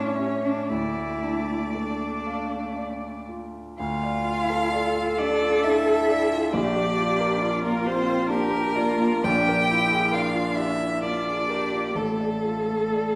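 A single rich violin carries the yearning melody with smooth, even vibrato in this slow, elegiac romantic movement for piano quartet, set in D minor in a rubato 3/4 at around 57-70 BPM. Beneath it, a warm cello sings an expressive second line with soft attacks and portamento, while a viola with portamento and a dark, mellow baby grand piano with long sustain supply the accompaniment over chords that move from A7 to D minor, then to Bb and Bb7 before settling on Dm/A at 12.0 seconds. All four play throughout this excerpt from a longer piece, heard from further back in a wet recital hall reverb.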